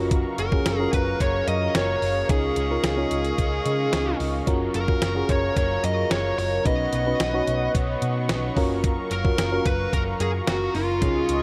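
A dark, fuzzed-out lead guitar carries the melody from 0.4 s over a glossy, romantic 1980s-style pop groove at 110 BPM in F# major, backed by a soft, warbling FM electric piano, a bright overdriven guitar tucked in the background, a smooth, detuned sawtooth pad holding sustained chords, a round hollow-body picked bass, and a clean 12-bit drum machine with a thumpy kick and fat snare, all set in a lush hall reverb, with shimmer reverb on the keys, pad and guitars, as the chords move between F#maj7, C#add9 and Badd9 in this excerpt from a longer piece.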